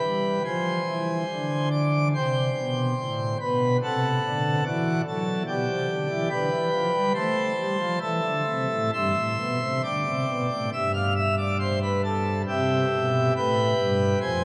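The rhythm moves in a flexible four-beat metre, the pulse stretching and yielding with rubato in the manner of a slow chorale. A pipe organ plays alone throughout, its principal chorus sounding full and up front, with a romantic voicing that spans from deep bass to high treble. The harmony opens on an F minor chord before passing through a sequence of rich changes, settling on a suspended chord and its resolution before arriving on C at 12.5 seconds. The organ rings in a wet cathedral acoustic with a long, lingering decay, while a faint vinyl crackle sits beneath the sound. The mood is majestic yet serene, and this brief passage is cut from a longer piece.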